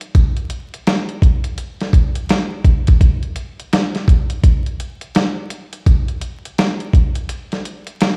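A dusty, sampler-style soul drum kit opens this dark, tough hip hop fragment, heard from 0.0 s and running for its full 8.2 seconds. The groove moves at 84 BPM in 4/4 with a swung sixteenth-note feel, built from kick drum, snare and hi-hat. The kit sounds gritty and compressed, with a thumpy kick and a medium-tuned snare sitting up front in the mix. A break arrives at 7.3 s, just before the cut-off of this piece lifted from a longer track. Vinyl crackle and a stony room reverb give the recording the character of a big sound system playing in a bare space.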